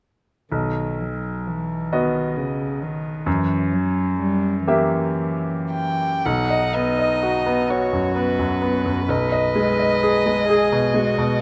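This is a classical excerpt from a slow romantic movement for piano trio in B major, moving in a rubato 6/8 at roughly 36-45 BPM counted in dotted quarters, with a tender, serene mood. The bright grand piano carries the accompaniment from 0.5 seconds, its brilliant, natural tone placed up front and sitting at the fore of the balance. Alongside it from the start, a single bowed cello plays a second line, its dark, sul tasto sound pure and floating with a soft attack. At 5.7 seconds a single violin enters with the melody, woody and dark with vibrato and a smooth top, set up front in the mix. The harmony moves from B to F#7b9, then back to B and on to G#m/B as the passage shifts into its second section. Close, detailed microphones and light reverb keep the intimate sound clear, and the excerpt is cut from a longer piece.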